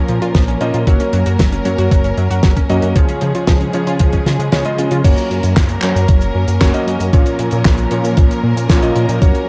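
A thumpy, sampler-style electronic kick drives this sunny, playful italo disco excerpt at 115 BPM in F# major, dropping out briefly from 4.5 to 5.0 seconds, alongside a dry, damped 70s kit with a fat snare, dark cymbals, hi-hat, handclaps and cabasa, a glossy chorused synth bass, clangy vintage electric grand piano stabs with digital delay, a lush, distant bowed string section holding smooth chords, and a round, detuned analog pluck playing chorused, delayed arpeggios in the background until 5.0 seconds, all within a dark production with light small-room reverb.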